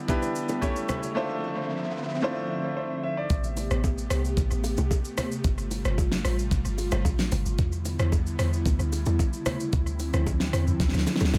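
A bright grand piano with tape echo and an airy, breathy pad with chorus open this soulful, deep amapiano piece in A minor at 112 BPM, over a smooth R&B drum kit with a knocking kick and fat snare, close, dry congas and bongos, and a background riser, until the piano drops out at 3.4 seconds as a round, dark log drum bass lands up front at 3.3 seconds, carrying the echo-heavy groove to a drum fill at 10.8 seconds.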